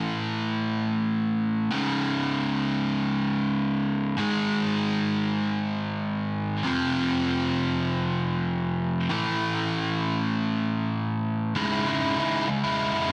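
Cathartic and brooding, this short rock passage, cut from a longer piece, unfolds in free time in C# harmonic minor. A lone overdriven electric guitar carries the whole piece from 0.0 to 13.1 seconds, its picked, double-tracked tone sitting up front and spanning C#2 to E4. Spring reverb colours the guitar, and the moderate reverb of a large studio, with an RT60 of 0.8 s, opens up the space around it. The power chords move from A5 to C#5, G#5 and F5 before returning to A5, then a closing turn at 11.6 seconds settles on C# minor. Heavy compression gives the recording a dense, radio-like sound.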